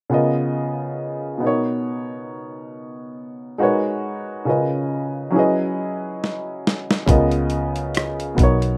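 A lightly swung 69 BPM groove in 4/4 carries this introspective, smooth R&B and neo-soul fragment, where a woody, slightly detuned upright piano sits up front with plate reverb over extended chords such as C#13 and Bmaj9, a gritty, pitched-down boom bap sampler kit with a thumpy kick and high-tuned snare enters with a fill at 6.2 seconds, and a dark, round, foam-muted electric bass joins at 7.1 seconds, all in a rough home demo mix with a small room sound.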